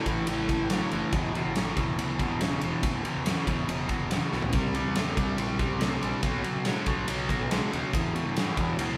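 An overdriven semi-hollow guitar opens this brooding, smoky blues rock cut at 0.0 seconds, its double-tracked, picked riff sitting up front with a warm hollow-body tone, low in the register. A growling fingered electric bass and a big acoustic rock kit join almost at once. The bass is bright and overdriven but tucked in the background, while the drums sit forward with a punchy kick, a medium-tuned snare, toms and a dark, smooth ride. At 141 BPM in a straight 4/4 with a southern rock swagger, the harmony moves in E minor from A5 through E7, C7 and B5 before landing on Em7, and a drum fill arrives at 4.3 seconds. A light reverb gives the sense of a power trio playing live together in one room, and the clip is cut from a longer piece.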